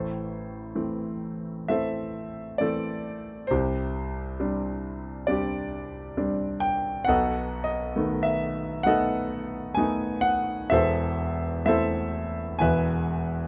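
Classical solo piano in a lyrical, tender and peaceful mood, where a clear concert grand with deep bass and short sustain sits up front in a close, detailed sound with light reverb, moving freely in rubato through a brief 13.5-second passage cut from a longer piece.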